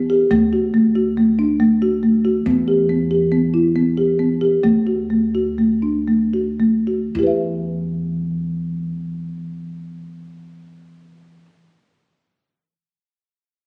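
Pensive and restless, this short excerpt cut from a longer piece is contemporary instrumental chamber music in an uneven 5/4 metre with a straight feel, set in E minor and tuned slightly high to A4 = 445 Hz. A folk marimba played with soft mallets carries the music in arpeggios across A3 to E5, its hardwood bars sounding rustic, round and mellow, close-miked and up front in the mix. Beneath it, a pizzicato upright bass with steel strings holds the low end between D2 and E2, bright and acoustic but sitting far lower in level than the marimba. The harmony moves between D and Em, and the tempo ranges from 106 to 141 BPM, slowing down from 3.3 to 7.2 seconds before a new section begins at 7.2 seconds on Em. The sound has the moderate reverb of a recital hall, captured on a phone in the room, with both parts stopping just before 12 seconds.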